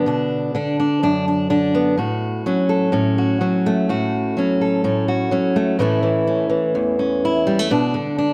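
A fingerpicked steel-string acoustic guitar, warm and up front, plays alone through this brief anthemic folk excerpt in a straight 4/4 feel, moving from Bm to F#m/A and reaching A at 5.8 seconds before settling back on Bm, its auditorium-like tone ringing in a moderate concert-hall reverb.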